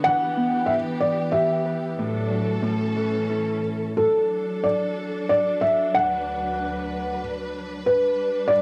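Innocent and gentle, this lullaby sways in a rubato triple metre. A felt-muted upright piano carries the melody up front, dark and intimate with its action noise audible, while a thumb-plucked Celtic harp rings beside it until 5.9 s, and a lush, distant string section holds bowed chords with vibrato underneath. All three share a cassette-tape home-recording character in a moderately ambient room, and the passage, cut from a longer piece, reaches a G chord at 7.9 s.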